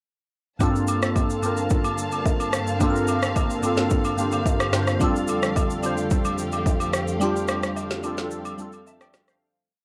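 Glassy, detuned digital keys with a chorus shimmer play rootless rhythmic chords, grace notes and short fills over Gm11 moving to F69 in this soulful, late-night amapiano piece in G minor at 109 BPM, backed by a dark, lush bowed string pad with sidechain pumping, a deep house kit of punchy kick, syncopated rim click, steady shaker and woody snare, and acoustic agogo bells and woodblock tracing a timeline, the whole captured on a dry, gritty cassette-tape sound that breaks down and fades out from 7.2 s.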